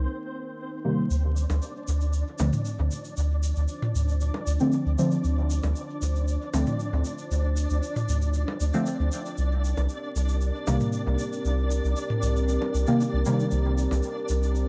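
Opening on a dark analog pad, a soft round sub bass and a flickering granular texture, this hazy, nocturnal dub techno excerpt in D phrygian at 116 BPM brings in a deep, mellow chord stab with chorus, phaser, cassette tape and dub echo at 0.8 seconds, then a bright egg shaker and echoing electronic bongos and toms, as Cm7 and Dm7 chords drift over an echo-heavy mix flecked with vinyl crackle.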